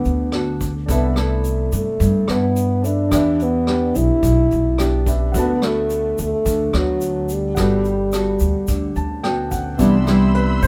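Sophisticated and relaxed, this bossa nova excerpt in G major moves at 108 BPM with a straight 4/4 feel. A mellow French horn with light vibrato carries the melody up front over dark, fingerpicked nylon-string guitar with audible finger squeak, a smooth vintage grand piano that adds a fill from 8.7 seconds, woody pizzicato upright bass, a vintage brush kit with a punchy kick and rolled-off top, and a grainy, bright tube shaker. Lush bowed symphonic strings enter at 9.8 seconds on the move to Cmaj7, all within light reverb.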